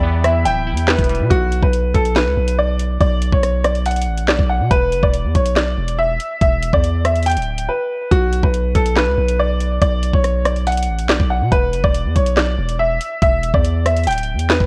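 The recording carries the worn, warbling character of old cassette tape, with a warbly pitch drift, light reverb and a digital ambience, and it is cut from a longer piece. It is a cold, tense drill track in B minor at 141 BPM in 4/4 with a half-time feel. It opens on an Em chord, with glassy digital keys, shimmering with chorus and a filter sweep, and a pure, close-miked flute section holding sustained chords with vibrato in the background, both dropping out at 1.3 seconds as the harmony moves to Bm. A clear, natural grand piano carries the melody up front throughout, while a deep, sine-toned 808-style bass with a fast attack sits just as prominently, its long notes decaying beneath the chords. The electronic drill kit, up front, brings a knocking kick, sharp snare, rim clicks, handclaps and metallic hi-hats, pausing for a brief break at 7.7 seconds before the groove returns on Bm.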